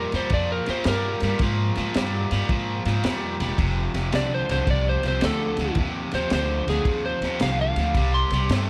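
Laid-back and soulful, this short electric blues shuffle swings easily as an electric slide guitar, slightly broken-up and played with fingerpicks, carries a solo melody through all 8.7 seconds. Beneath it, a bright, overdriven semi-hollow guitar sits up front with a picked riff bathed in spring reverb, and a woody pizzicato upright bass holds the low end. A crunchy breakbeat drum kit enters at 0.1 seconds with a punchy kick, high-tuned snare and dark ride cymbal, its small-room sound gritty, saturated and rolled-off at the top, all under a light reverb.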